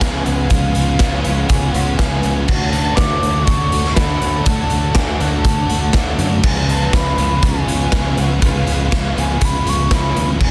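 A saturated, gritty garage drum kit sits up front in a bright stone room at 121 BPM, driving this dreamy, blissful shoegaze and dream pop rock piece over a growling overdriven fingered bass, while an airy, hollow concert flute carries the melody through analog delay above a lush detuned sawtooth pad with chorus, a shimmering octave-doubled twelve-string acoustic picking arpeggios, a compressed clean electric riff washed in reverse reverb, a dark double-tracked overdriven electric and a thick fuzz guitar with distortion and ensemble chorus, over chords moving between C#7 and Dmaj7 in a dense, heavily limited modern master.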